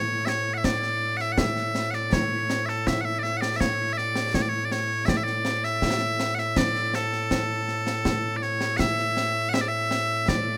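Piercing, continuous bagpipes carry the melody from the first instant, sitting up front in a proud, ceremonial Scottish pipe tune in a stately three-beat metre. Concert snare and bass drum join at 0.3 seconds, acoustic with a small-room sound and glinting cymbals, all under a light reverb. The tune shifts into a new section at 8.8 seconds before this excerpt from a longer piece breaks off.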